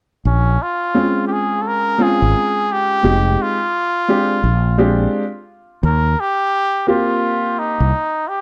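Hip hop in a jazz-hop vein, this mellow, cool excerpt sways on a swung sixteenth-note feel over minor-seventh and extended chords. A veiled, soft cup-muted trumpet carries the melody with an analog delay trailing its phrases, while a round, amped fretless electric bass anchors the low end from 0.3 seconds. A smooth, vintage-toned grand piano enters with accompaniment at 0.9 seconds, all sitting up front in a moderate studio reverb until the trumpet's last note at 8.4 seconds.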